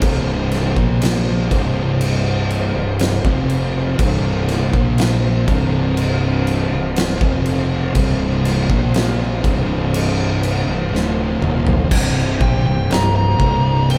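A slow, hypnotic stoner-doom groove at 60 BPM opens on an oversized, low-tuned acoustic kit with a boomy kick, fat snare and gritty, pumping room sound up front, while two dark, picked fuzz guitars grind out a heavy riff over a C minor chord beneath an overdriven fingered bass. A full, shouting tonewheel organ with key click, slow rotary speaker and chorus vibrato holds sustained chords in the background as the band plays together live in one lightly reverberant room. After a drum fill at 10.9 seconds the harmony moves to C5 at 11.9 seconds, and at 12.4 seconds a distorted lead guitar with wah begins a high solo in this excerpt cut from a longer piece.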